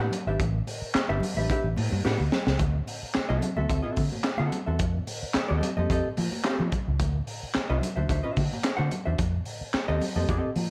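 Funk at 109 BPM in D mixolydian, this strutting excerpt pairs an up-front, clean, compressed hollow-body jazz guitar comping on extended ninth chords with a round, punchy foam-muted fingered bass, a gritty, saturated breakbeat kit of handclaps, hi-hat, tight kick and high-tuned snare that drops a fill from 2.0 to 2.6 seconds into the second section, and ringing hard-hand congas tucked in the background under light reverb.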